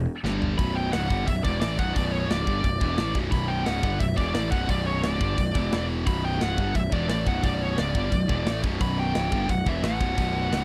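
A growly, fuzz-laden picked bass sits up front in this dark, relentless heavy metal piece at 175 BPM in B minor, pushing under a scooped, double-tracked high-gain rhythm guitar riff. A polished, tight metal drum kit with a medium-tuned snare opens with a short fill at 0.2 seconds, and a high-gain lead guitar carries the melody in its upper register from 0.6 seconds as the harmony settles on B minor with a brief shift to E. The sound is dry and close, like a 1970s studio session, and the recording is cut from a longer piece.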